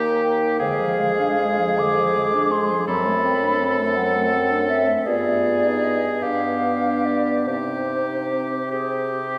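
This short excerpt, cut from a longer piece, sits in the generous wet bloom of a church reverb with a 2.7-second tail, as if heard in a church or concert hall. It is a slow, elegiac romantic movement for wind quintet in 6/8, moving freely with rubato at roughly 47-56 dotted-quarter beats per minute, solemn throughout. The hollow, pure-toned silver concert flute carries the melody from 0.2 seconds, singing with vibrato and tongued notes high above the ensemble. Beneath it the oboe, clear and up front with light vibrato, holds a second line. A close-miked French horn with vibrato and a distant, roomy clarinet fill in the accompaniment, while the mellow bassoon anchors the bass. The harmony drifts from Eb through diminished and dominant-seventh colors, leaning on G7b9 at 5.1 seconds before settling onto C minor at 7.5 seconds.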